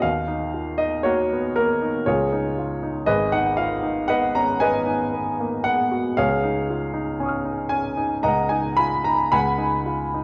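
Impressionist classical solo piano, serene and luminous, moves in a slow, rubato 3/4 at 58 BPM through this brief excerpt cut from a longer piece. A clear, present grand piano sits up front and spans from G#1 to E#6, drifting through colorful harmonies such as D#m, C#add9, G#m7 and C#13 before settling on G#m11/C# at 9.3 seconds. Moderate concert hall reverb gives the sound a spacious, lingering glow.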